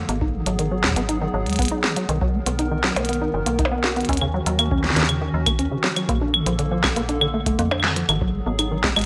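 A warbling, lo-fi pad of detuned sustained chords opens this melancholic, intricate IDM excerpt alongside a rubbery acid bass tracing resonant arpeggios through lush chorus and tape echo, while a metallic FM bass with a mellow, decaying tone holds down the low end. Just after, a glitchy, up-front kit of tiny snare, clicky hats, claves and percussion blips enters with tape echo, joined by a deep, analog electronic kick in small room ambience. The chords move from Abm7 through Bmaj7, Ebm7 and Bbmaj7 before returning to Abm7 near 8.1 seconds, all set in a moderate digital room reverb.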